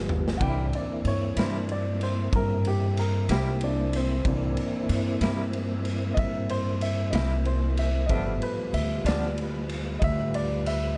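A clear, polished upright piano carries a solo through this gritty, rollicking slow blues excerpt at 62 BPM in a straight 12/8. A brief drum fill opens the clip before the harmony settles on C7 at 0.4 seconds and moves to G7 at 8.1 seconds. The raw garage kit of kick, snare, toms and ride sits up front, saturated and punchy in a pumping stone room, while a thumpy, gut-strung pizzicato upright bass holds down the low end with a woody tone. A tonewheel organ sustains chords under chorus vibrato and a slow rotary speaker. A clean electric guitar adds picked accompaniment coloured by tremolo. Light reverb and a dark production round out the sound.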